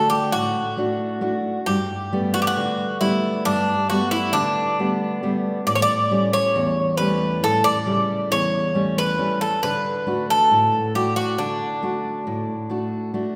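Tender and warm, this short cut from a longer Greek folk piece in 9/8 gathers pace as a bright, metallic bouzouki with its doubled strings carries the up-front melody over a fingerpicked steel-string acoustic guitar, whose finger squeaks can be heard through chords moving from D through Gadd9 and A7 back to D, all bathed in the long, wet reverb of a church or concert hall.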